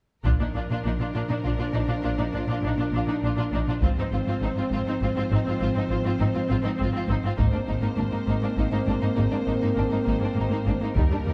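Close, dry taiko drums struck with hard sticks drive this epic, heroic orchestral film-score excerpt in 3/4 at 101 BPM, building from 0.2 to 11.3 s over Bb, Fm/Ab and Abadd9 as a focused, lush violin section carries the melody above a softly attacked, expressive second violin line, smooth, even violas, punchy yet mellow French horn chords, and a rich cello and distant double bass foundation, all set in a moderate scoring-stage reverb with a dark, warm production.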